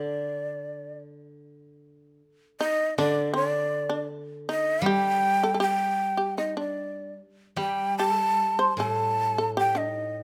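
Close, detailed microphones and light reverb frame this austere, calm stretch of Japanese chamber music, cut from a longer piece and moving freely around 70-83 BPM in 2/4. A breathy, mellow shakuhachi carries the melody up front with vibrato, tongued attacks and expressive chiff, while a buzzing, percussive shamisen plucked with a plectrum sounds a second line beneath it. Lower still, a bright, woody koto played with fingerpicks supplies dry accompaniment throughout all 10.2 seconds, and after 1.4 s the music shifts into a new section.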